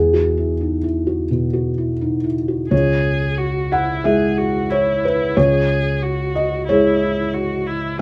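A felt-muted upright piano sits up front, its tone soft, dark and vintage, opening alone on an Eadd9 chord in this melancholic, fragile neoclassical piece for piano and strings in C# minor, moving with a rubato feel at around 84-92 BPM in 4/4. At 2.7 seconds a single bowed viola enters over a shift to C#m, its clear, focused voice carrying vibrato. The pair play live in one room, wrapped in a wet studio reverb, and the passage is cut from a longer piece.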